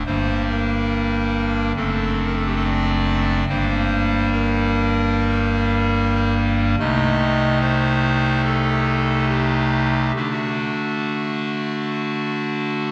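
A pipe organ speaks through a hollow clarinet stop with baroque voicing, its reedy solo voice sitting up front with a touch of chiff at the start of each note. This solemn, grave chorale-style fragment, cut from a longer classical piece, moves with uneven, rubato beats in minor, settling onto a D chord at 10.2 seconds. A wet church reverb lingers long around the organ's sound.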